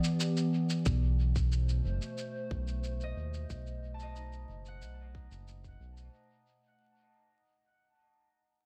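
A warbling, lo-fi pad of sustained chords with chorus opens this spacious, hazy ambient dub fragment at 91 BPM in 4/4 alongside a muffled, pitched-down shaker soaked in dub echo, all over light reverb and vinyl crackle. At 0.9 seconds a round, dark analog bass with tube saturation and a tight electronic kick arrive as the harmony moves from Em7 to B7b9. From 3.0 seconds a bright, ringing Celtic harp adds faint fingerpicked arpeggios through a low-pass filter sweep and dub echo, while the passage fades out.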